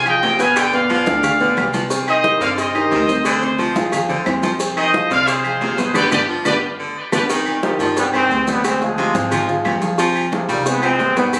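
Passionate, danceable salsa at 178 BPM in C harmonic minor, cut from a longer piece, where a bright, punchy trumpet section with vibrato and tape echo carries the melody up front until 7.2 seconds before a tight trombone section with a smooth top takes over at 7.6 seconds. An edgy, forceful baritone saxophone plays a second line over a woody pizzicato upright bass and an intimate upright piano with audible action noise, while congas, agogo bells and timbales, claves, cowbell and grainy maracas drive the rhythm, a drum fill and band accent at 5.9 seconds mark the turn into the next section, and a wet large-studio reverb surrounds the phone-recorded sound.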